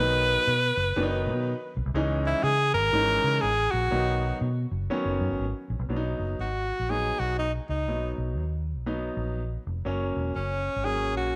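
A breathy, bright tenor saxophone carries the melody up front in a close-miked pop style with a light vibrato, sitting between C#4 and B4 across this short excerpt cut from a longer piece. This is uptempo 1960s-style soul in B major at 121 BPM in 4/4, with a swung eighth-note feel that makes it uplifting and danceable. A clear concert grand piano supplies the accompaniment with a natural tone and deep bass, moving through B, C#madd9 and back to B before reaching F# at 9.9 seconds. Underneath, a vintage foam-muted fingered electric bass gives a dark, round, punchy, amped line. The room carries a moderate echo chamber reverb with a small-room character, placing the parts in a snug, period-flavoured space as the passage shifts into a new section at 5.9 seconds.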